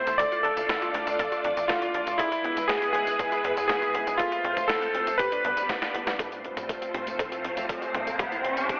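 Italo disco at 120 BPM in a straight 4/4, this excerpt from a longer piece carries a nostalgic, bittersweet mood over a chord movement from Dm through E, F and G before settling onto F and C. A bright, clangy electric grand piano sits up front with the melody, treated with digital delay, and drops out at 5.7 seconds, while a lush vintage string machine holds sustained chords with slow attack and ensemble chorus. Beneath them, a round analog pluck spins arpeggios in the background through chorus and tape echo, and a tight, punchy sequencer bass drives the low end with tube saturation. A sampler-style drum machine supplies hi-hat, a medium-tuned snare, tambourine and toms with gated reverb, joined by a thumpy electronic kick. A drum fill leads into a new section at 6.2 seconds, where a filter sweep moves across the arpeggio sound and a riser enters at 7.3 seconds. The whole mix is colored by a moderate plate reverb and a telephone-like sound.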